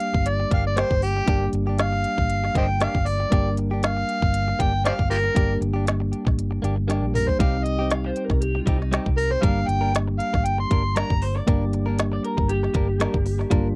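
A straight-eighth 4/4 groove at 118 BPM with a light sixteenth-note swing drives this brooding, soulful soul blues excerpt in G minor, where an organic electronic drum kit's tight kick, woody snare and smooth hats and a round, foam-muted fingered electric bass sit beneath a gritty, overdriven harmonica melody full of tongue slaps, scooped notes and light vibrato that ends at 11.2 s, while a clean tine electric piano, bright compressed stabs from a direct-recorded electric guitar with tape echo, and, from 7.9 s just after a drum fill at 6.9 s, a slightly broken-up picked guitar second line round out a dry, close 1970s-style sound.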